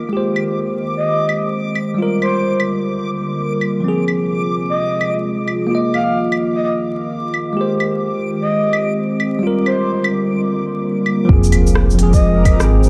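A bell-like tine electric piano and a warbly, nostalgic tape-like pad, both pumping gently, open this nocturnal, rainy future garage excerpt together with a dreamy reversed texture, all under a long ambient reverb and a bed of vinyl crackle. A soft, breathy flute-like synth lead with vibrato carries the melody from 1.0 s, over a swung, organic electronic kit of crisp hats, claves, rim clicks and shaker. At 11.3 s an impact arrives as a round, up-front sub bass, a soft kick and a very quiet sub drop enter.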